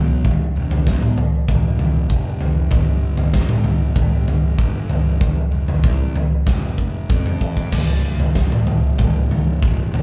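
The recording is dry and close, with the feel of a band playing live together in one room. This is a short cut from a quiet-loud alternative rock piece in straight 4/4, and its mood is anthemic and restless. A picked electric bass opens the clip, growly and overdriven with a bright, amped fuzz edge, working low in its register. A big acoustic rock kit joins at 0.2 seconds and sits up front, sounding dark and smooth overall, with a fat snare, a punchy kick, crash cymbal, toms and bright cymbals carrying a big-room character. The drums stand somewhat louder than the bass, and the standout moment is a drum fill from 6.5 to 7.7 seconds before the kit and bass carry on together to the end.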